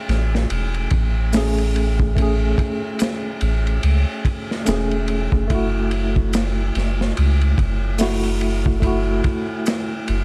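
Trip hop with a cinematic, brooding mood, this short excerpt from a longer piece moves at a slow, swung 4/4 under a dark studio reverb. A clean tine electric piano, heard through a combo amp with tremolo and tape echo, carries the accompaniment in a middle register, shifting from Amaj7 to F#m7 at 5.5 seconds. Underneath sits a soft dub sub bass, deep and round with a fast attack and sustained notes, placed up front in the mix. The crunchy breakbeat drum kit of kick, snare, hi-hat and ride has a saturated, gritty character with a tight kick, a medium-tuned snare, dark cymbals and a rolled-off top, also sitting up front. Maracas and a group handclap stay in the background from 1.3 to 9.9 seconds, adding a small-room acoustic texture to the smooth, shadowy groove.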